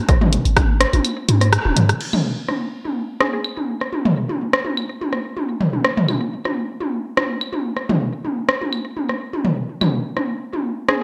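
This quirky, hypnotic fragment of minimal techno moves at 125 BPM in 4/4, with a light swing on the 16ths. It opens on a G#5 chord as a deep, punchy sine sub bass with a pitch-drop attack, tube saturation and sidechain pumping sits under a dry electronic kick, an analog drum machine up front with crash cymbal, hi-hat and rim click, and a band accent landing at 1.5 s. At 2.0 s the harmony falls away and the bass and drum machine stop, leaving a minimal click kit of claves, rim click and toms, re-recorded in a large room, to carry the groove to the end. A crystalline wavetable pluck on G#4 flickers in briefly at 3.2 s and again near the close, its detuned tone evolving through a noise layer and filter sweep, colored by chorus, vintage 12-bit sampler grit and tape echo. Light reverb lends the sparse mix a touch of air.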